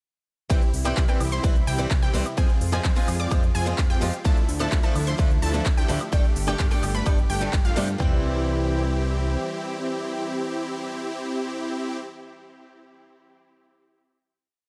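Triumphant and uplifting, this short festival progressive house piece runs at 128 BPM in C major and opens straight into a drop at 0.5 seconds, moving through C, Fm, Dmadd9 and Gsus2 before settling on a final C chord from 8.0 seconds. An overdriven, punchy four-on-the-floor kick with floor tom sits up front, while a quieter second drum layer adds crisp, tape-tinged hats, claps, shaker, ride and a high woodblock that sound re-recorded in a large room. A fat, detuned analog bass drives eighth notes under huge, airy supersaw chords in a dotted rhythm, joined by a bright, boxy picked acoustic guitar playing swing-style dotted chords and a punchy unison pluck that doubles the chords an octave higher, with ring modulation and a filter sweep on the pluck. A soft-attack pad with chorus holds sustained chords in the background, and sidechain pumping breathes through the bass, pad, pluck, guitar and supersaws, with dub echo on the guitar, pluck and supersaws. 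A band accent lands at 7.5 seconds, the drums drop out by 8.1 seconds and the bass by 9.4 seconds, leaving the final chord to ring in a dry mix with little reverb.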